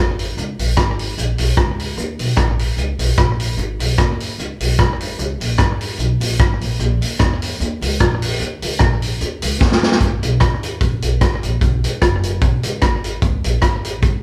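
Energetic and mischievous, this ska excerpt in G# minor moves at 149 BPM with a light swing, pairing a woody, pizzicato upright bass with an up-front vintage drum kit with a rolled-off top, made up of hi-hat, punchy kick, rim click and medium-tuned snare, all captured as a live band in one room with light reverb, and a drum fill at 9.6 seconds leads into a new section at 10.0 seconds.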